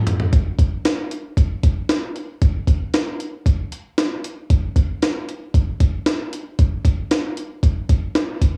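A worn, warbling cassette sound with wavering pitch drift colours this short cut from a longer piece, set in small room ambience with a moderate digital reverb. It is a driving, cool pop groove at 115 BPM in a straight 4/4, carried entirely by a jungle sampler-style drum kit that sits up front. The kit is compressed and pitched up, with a gritty edge, a thumpy kick, a high-tuned snare, hi-hat and toms, and it was re-recorded in a large room. A drum fill opens the passage, and the drums run from 0.1 to 8.5 seconds.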